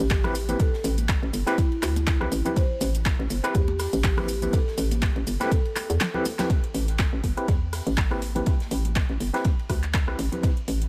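A deep, tape-warm electronic kick drum sits up front in this hypnotic deep house excerpt at 122 BPM in A minor, pushed along by a 56% swing on the sixteenths over a single Am7 chord. Beside it, a hollow, knocking FM bass bounces with a punchy, fast attack and tube saturation, pumping with sidechain compression. A layered house kit adds a fat snare, metallic hats, handclaps, rim clicks and shaker, while a big-room acoustic kit with bright cymbals and a medium-tuned snare sits far back, filtered and trailed by tape echo. Barky, gritty stabs from an overdriven tine electric piano pulse with medium tremolo through a combo amp and dissolve into dub echo, and bright hard-hand congas tap away in a small room in the background. A mellow, ringing vibraphone played with soft mallets carries the melody over the opening drop until 6.4 seconds, a drum fill arrives at 6.0 seconds, and a new section begins at 6.5 seconds, all within an echo-heavy mix with light reverb.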